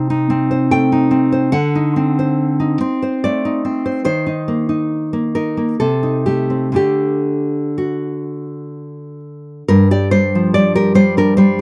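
A wistful, passionate romantic passage for solo nylon-string fingerpicked classical guitar, full-bodied and up front in a dry, close 1970s-style studio sound with light reverb, moves in a rubato 3/4 at 57-74 BPM in G minor, opening on Adim/C and passing through D7b9, Eb5 and D before settling on G5 at 9.7 seconds in this short excerpt cut from a longer piece.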